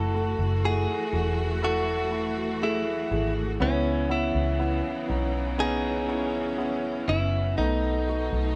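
In a straight 4/4 at a slow 61 BPM, this short cut from a longer pop ballad in C# minor moves with a heartbroken, melancholic weight, tuned slightly sharp to A4 = 443 Hz. A clean electric guitar, recorded direct, picked and compressed, carries the melody between C#4 and A4 across the full 8.6 seconds. Beneath it, a concert grand piano supplies accompaniment with an intimate, polished tone, deep low end and audible action noise. A close, focused string section holds lush bowed chords with vibrato, sitting a little further back than the other parts. A vintage fingered electric bass, foam-muted, dark and round, sits punchy and up front in the low register. The harmony moves from F#m7 to C#m7 at 3.6 seconds and then to B7, all played as a live band in one room with moderate studio reverb and a softened top end.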